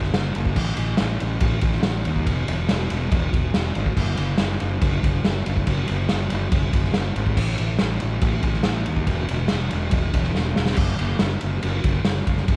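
Driving straight 4/4 at 141 BPM, this rowdy, swaggering garage rock excerpt pairs an up-front, overdriven fuzz bass, round and dark in its low register from E1 to D#2, with a raw, gritty acoustic drum kit of punchy kick, medium-tuned snare, ride and crash in a bright stone room, all dry and close, with a drum fill at 10.4 seconds tipping into a new section at 10.8 seconds.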